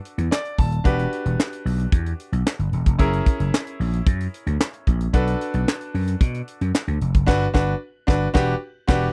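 A straight 4/4 groove at 112 BPM drives this slick, funky early-eighties boogie-funk excerpt in E minor, opening with a brilliant grand piano fill at 0.0 s as a tight, natural-sounding acoustic kit with a high-tuned snare, snug kick, hi-hat, handclaps and crash cymbal enters at 0.1 s, joined at 0.2 s by a growly, punchy amped slap bass, all up front in a dry, close 1970s-style studio sound as the chords move through Gmaj7, Em9, F#7 and Bm7 toward a band accent at 7.3 s.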